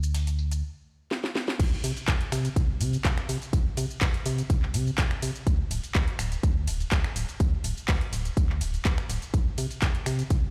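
Piano house at 124 BPM in straight 4/4, uplifting and joyful, heard in a short cut from a longer piece. An organ-like FM bass sits up front from the opening, hollow and dark with a fast attack and percussive decay, pumping against the sidechain across a range from D1 to C3. A house drum kit runs throughout with a cracking snare, metallic hats, crash and ride cymbals, finger snaps, handclaps and shaker, while a very quiet sampler-style breakbeat kit adds gritty, tape-warm hi-hat, snare and tambourine underneath. After a brief stop broken by a drum fill, the drop lands at 1.6 seconds, where a punchy, layered electronic kick enters up front and drives the groove to the end. The parts themselves carry little reverb, yet the whole mix sounds as if played on a big sound system in a bare stone room.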